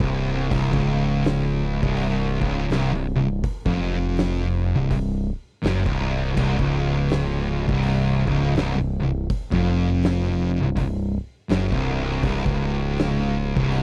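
A pair of thick fuzz guitars opens the clip together, picking a low, distorted riff between C2 and F#2, one with a warm tone and the other darker and pushed up front. Beneath them, a smooth synth bass built from sawtooth and triangle waves holds sustained notes with a fast attack, its overdrive adding weight an octave lower. An oversized, low-tuned acoustic drum kit plays throughout with a punchy kick, fat snare, hi-hat and dark crash cymbals, its sound gritty and saturated with the character of a bright stone room. This stoner and doom metal passage moves at a slow 82 BPM in 4/4 with a 60% swing on the eighth notes, giving it a heavy, sludgy lurch. The dry, close mix recalls a 1970s studio, and all four parts run together for the full 13.8 seconds of this fragment cut from a longer piece.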